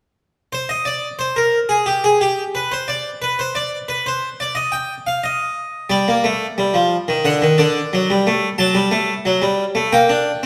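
A lone harpsichord opens at 0.5 seconds with a baroque-style two-part invention in 4/4, its airy, plucked Flemish-style tone full and up front from two sets of strings, sounding through a wet recital hall reverb. The mood is contemplative yet driving, ranging from D3 to A5 as the harmony moves from Gm through D and F#m to Gm/Bb. The passage, cut from a longer piece, runs until 10.5 seconds.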